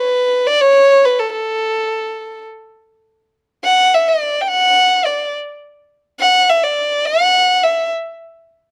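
Unmetered and free in time, this festive, warm Turkish excerpt in makam rast features a single up-front solo violin, dark, woody and boxy with light vibrato, bowed by one player from 0.0 to 7.9 seconds in a dry outdoor setting.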